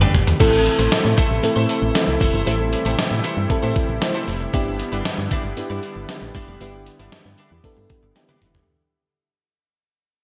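A clean 12-bit drum machine with a thumpy kick, medium-tuned snare, hi-hat, tambourine, toms and crash drives a straight 4/4 at 116 BPM, opening with a fill and adding another at 8.2 s, in this nostalgic, dramatic 1980s-style pop cut in A minor that fades out from 0.4 s. A round, punchy FM bass sits beneath a dreamy, detuned FM electric piano treated with chorus, phaser and slapback echo, while a bright, twangy twelve-string electric guitar plays a picked riff with delay, and a thick sawtooth unison pad enters at 0.4 s holding sustained chords as the harmony moves from Am to Em7. A lush hall reverb lends a big arena sound.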